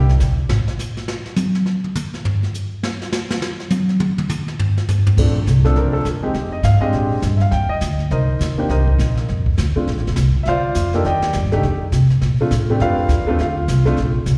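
This jazz piano trio fragment has a swinging, relaxed feel, caught as a live gig through the venue's PA with a light recital-hall reverb around it. The brush kit carries a solo passage from 0.5 seconds, its brushed snare, hi-hat, crash, toms and boomy kick sounding small-room and acoustic, with a slapback echo. After a brief opening moment, the pizzicato upright bass returns at 5.2 seconds, woody, dark and thumpy on steel strings, and sits up front. The grand piano enters at the same point with the melody, intimate and natural, with a long sustain, audible action noise, plate reverb and a touch of slapback echo. Underneath, the harmony moves through colourful jazz voicings such as Bbmaj9, Bb13, Eb6 and Cm7, including a rootless Bbadd9, before returning to Bbmaj9.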